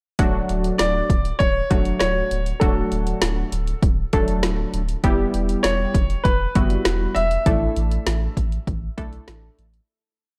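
A melancholic, cool synth-pop piece at 99 BPM in a straight 4/4, moving from Dmaj7 to Em and settling on Asus4 as it fades out from 7.5 seconds. A straight drum-machine beat from a deep house kit, with a punchy kick, woody snare and dark hats, drives beneath a round, pulsing eighth-note sine sub bass and a funky, detuned sawtooth polysynth pushing triad chords through a chorus effect. From 0.8 seconds a clear, present baby grand piano carries a motif-based melody in sentence-like phrases, touched with slapback echo, all set in light digital ambience with a dark, warm production.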